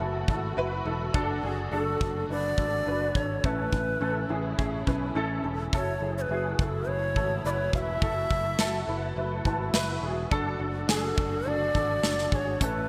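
Driving and earnest, this piano-driven pop excerpt at 105 BPM in 4/4 sets a dark, woody upright piano with ensemble chorus over picked electric bass, a modern studio drum kit with hi-hat, punchy kick and snare, and lush bowed strings in the background, while a bright, close-miked shakuhachi with crisp chiff and vibrato carries the melody from 1.7 seconds, the piano adding a fill at 9.2 seconds over F#m7, D/F# and A chords in a hall-reverbed, 1980s-style digital sheen.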